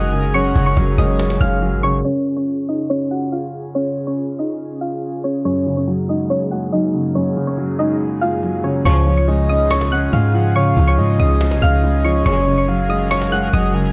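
Dreamy, wistful trap-flavored hip hop in Db major at 141 BPM with a half-time feel, this fragment of a longer piece centers on a soft, round, chorused pluck melody over an airy, detuned pad and a felt-muted upright piano whose intimate tone carries audible action noise. By about 2 seconds the breathy flute-like lead, snappy cajon, deep, boomy 808-style bass and the piano drop away for a filter-swept middle stretch, with the piano returning at 5.5 seconds. At 8.9 seconds the bass, cajon and vibrato-tinged, delayed lead come back, joined by brief smooth-topped brass ensemble stabs, all within a dark, lightly reverberant, low-passed mix.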